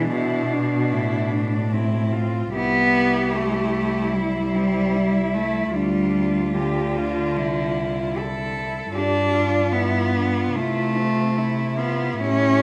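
Classical, yearning and elegiac, this rubato passage for cello ensemble, cut from a longer piece, sets a warm, focused bowed melody with vibrato over a smooth, distant second cello, an up-front accompanying cello with a rich tone, and an intimate bass cello with soft attacks and an airy bow, the four playing throughout in a recital hall's lingering reverb as the harmony moves through A minor, C and G7 before settling on C.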